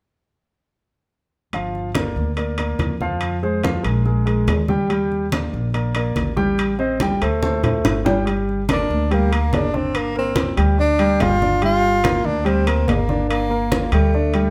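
A breathy, whispered tenor saxophone with vibrato takes the melody at 8.7 s in this fiery, driving Afro-Cuban jazz excerpt, playing over a clear, polished upright piano with audible action noise, a woody pizzicato upright bass, bright, low-tuned congas and ringing metal-shell timbales, the band playing live together in a stone room with moderate reverb.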